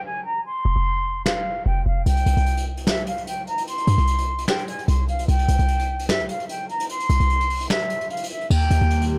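Menacing and dark, this half-time trap cut at 149 BPM opens on an airy, mellow concert flute carrying the melody through a low-pass filter and analog delay. A short, punchy 808-style bass with transformer saturation sits up front from 0.7 seconds, and a vintage brush drum kit of snare, hi-hat, finger snaps and dark cymbals follows at 1.3 seconds with a rolled-off top and a pumping room. A deep, detuned analog pad with chorus slips in at 8.7 seconds for the closing moments, all in a dry mix.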